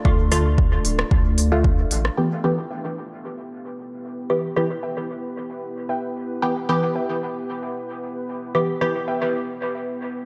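A cavernous, nocturnal dub techno excerpt at 113 BPM in E phrygian opens on a moody, detuned sawtooth pad with chorus and built-in reverb and a muted, up-front chord stab soaked in phaser, cassette-tape grit and dub echo, both pumping under sidechain over a Dm-to-Em shift, while a round sine sub bass, a punchy tape-toned kick and a smooth deep house kit of low-passed hi-hat and rim click with dub echo sound only until about 2.1 s, after which a warbling, lo-fi triangle-and-saw pluck with a sub octave and chorus drifts in at 2.7 s through light digital ambience.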